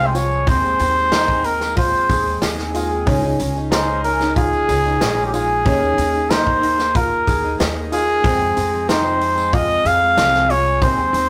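Bittersweet and wistful, this indie folk passage, cut from a longer piece, has a straight 4/4 feel and an arrangement that builds. A warm, classical-style trumpet carries the solo melody up front, singing between G4 and F5 over a picked twelve-string acoustic guitar whose octave-doubled strings give a shimmering accompaniment. A clear upright piano adds arpeggios in the middle register, while a pizzicato upright bass with steel strings supplies a woody low end. From 0.1 s, a natural country drum kit joins with a punchy kick, a medium-tuned snare and hi-hat, along with a jingly tambourine kept very quiet. The harmony moves through Ab/Eb, Dbsus2 and Ebsus4 before landing on Fm, all heard in a small room with a rough, rehearsal-room sound and tube saturation.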